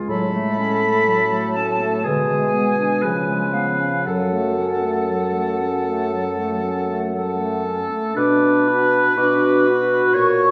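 Heard from further back in a recital hall, this recording is wrapped in a wet, lingering reverb. It is a slow, solemn and melancholic movement for wind quintet, cut from a longer piece and shaped with a freely breathing rubato. The silver concert flute carries the melody high above the ensemble, its pure metal tone marked by expressive vibrato and a crisp attack despite its distant placement. Just beneath it, a warm oboe sits up front with the second line, while a bright clarinet and a mellow French horn, the horn set in the background, fill out the accompaniment. A dark bassoon with a smooth top anchors the bass. The harmony moves through a cadence into a new section at 8.2 seconds, where the music turns toward B minor before the excerpt ends at 10.5 seconds.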